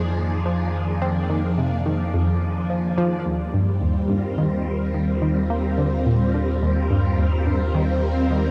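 Ambient, sequencer-driven space music with a hypnotic, mysterious mood, cut from a longer piece, where a swirling, phased string machine holds sustained chords over a deep sine sub bass while a bubbling, resonant stepped-filter texture sits in the background and a round, wave-folded analog pluck riff with chorus and analog delay enters at 0.5 seconds, all moving from Fm7 to Eb in a dark production with a moderate plate reverb.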